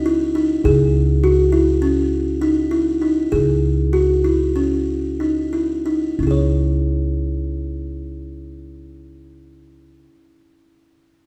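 A buzzing kalimba sits up front in this urgent, hypnotic piece of contemporary chamber music, its hollow, ringing tone spinning arpeggios between C#4 and C#5. Beneath it, a dark, thumpy pizzicato upright bass holds a low C#2 on steel strings, also placed close to the listener. The music moves in an uneven 9/8 metre with a straight feel, with eighth notes running at 179-204 BPM over a single C# minor chord. The pace slows between 1.2 and 6.2 seconds, where a new section begins. The recital hall reverb is generous and wet, and this short passage is cut from a longer piece.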